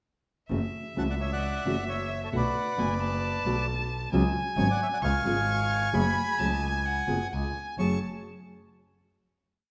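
A moderate scoring-stage reverb gives this short, complete tango a spacious sheen, while the close-miked bandoneon sits dry and up front. In F# minor at 132 BPM in 4/4 with a rubato feel, the piece is dramatic and passionate. The bowed double bass, thumb-plucked nylon-string guitar and bowed violin open at 0.5 seconds: the bass is biting and earthy with light vibrato, pushing an uneven tango rhythm of grouped threes and twos, while the dark, full-bodied guitar supplies short chords and the focused violin weaves a counter-melody with vibrato. The reedy bandoneon enters at 1.0 seconds with a motif-based melody in period phrases, partly doubled in thirds. The harmony moves from F#m7 through Bm7 and C#7sus4 to C#, then settles on an F#madd9 chord that rings from 7.8 seconds to the close.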